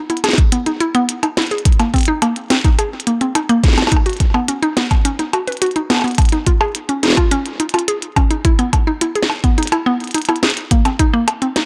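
A mallet-like synth pluck leads this short, playful IDM excerpt, spinning arpeggios from Bb3 to Cb5 in a woody, round tone with a nasal FM edge and a noise layer. Its fast attack and short decay give each note a percussive bite, while chorus and delay fill out its full-bodied sound up front. Underneath, a glitchy electronic drum kit of clicky hats, percussion blips and a tiny snare adds a scattered, delayed sparkle in straight 4/4 time. A deep electronic kick joins at 0.4 seconds and sits prominently in the mix until 11.1 seconds, giving the busy textures a solid anchor. Every part sits up front, the drums carry a small-room character, and everything is wrapped in light reverb and a digital ambience that keeps the mood crisp and quirky.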